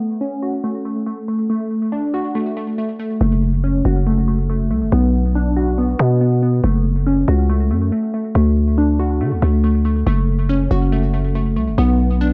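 A glassy, crystalline wavetable pluck opens this menacing F# minor drill excerpt at 140 BPM in a half-time feel, its detuned, chorused arpeggios filtered and tape-echoed over F#m and D chords before a growling, buzzy 808-style bass lands up front at 3.2 seconds and the progression moves on through Bm, all captured in a dry, gritty hardware sound with transformer saturation.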